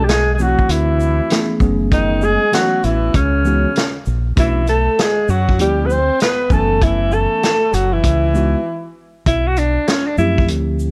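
A swung sixteenth-note jazz-hop groove from an up-front vintage drum kit with a tight kick and rolled-off top carries this smoky, cool hip hop excerpt, where a round, dark fingered dub bass anchors worn, slightly out-of-tune tine electric piano, a mellow tenor saxophone with vibrato voices a second line until 9.0 s, and a breathy subtone alto saxophone leads with scooped notes before a brief break gives way to its solo at 9.3 s.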